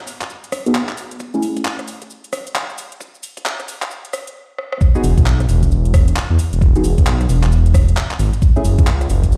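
A knocking, tape-warm electronic kick leads this soulful, skippy two-step UK garage piece, backed by a garage kit of metallic hats, handclaps, rim clicks and shaker, while a deep, mellow chord stab coloured by chorus, phaser and tape echo drifts through a filter-swept build-up until a drum fill at 4.6 seconds tips into the drop at 4.8 seconds, where a dark, detuned, saturated saw bass soon rumbles in with sidechain pumping, the mix ringing as if played over a big sound system in a bare stone room.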